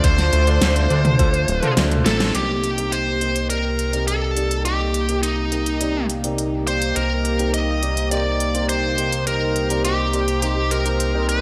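Synthwave with a cinematic, moody cast, this short cut from a longer piece moves in a straight 4/4 from a Dm7 to an Ebmaj7/C chord. An overdriven, bluesy electric guitar carries the picked melody up front, its distortion trailed by a digital delay, while a soft, airy, dreamy synth lead with vibrato adds a very quiet second line until 1.7 seconds. A shimmering, retro pulse-width pad holds sustained chords and pumps with sidechain compression, and a fat, thick analog bass with tube saturation and an evolving filter sweep sits forward in the mix. In the background, a cutting, clangy vintage electric grand piano plays short stabs through lush chorus and a low-pass filter. A knocking electronic kick drops out at 1.3 seconds, while a pop kit with a fat snare, crisp hats and toms, dressed in gated reverb, delivers a fill that leads into a band accent at 2.2 seconds. A moderate plate reverb and a bright 1980s-style digital sheen tie the sound together.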